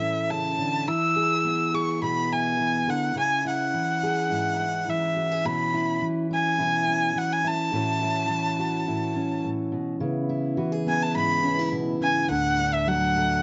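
A clear, earthy erhu carries the wistful melody with light vibrato, portamento, a biting edge and plate reverb, set up front over a dark, fingerpicked steel-string acoustic guitar with audible finger squeak in this intimate acoustic folk piece at 105 BPM in 4/4, moving from A through E and C#m before a mellow, round tonewheel organ, lightly overdriven with chorus vibrato and a slow rotary speaker, joins with sustained chords at 10.0 s as the harmony shifts to C#m7 and D.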